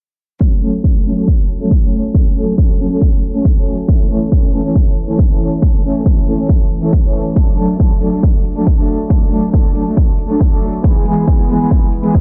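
A heavy, layered electronic kick drum sits up front in this euphoric, soaring uplifting trance excerpt at 138 BPM in F# minor, alongside a dark, lush, woody symphonic string section whose bowed, vibrato-laden sustained chords pump with sidechain over F#m, A, D and E, and a very quiet tape-warm electronic hi-hat, while a filter sweep runs from 0.4 to 12.2 seconds through a dense, heavily limited, low-pass filtered modern master.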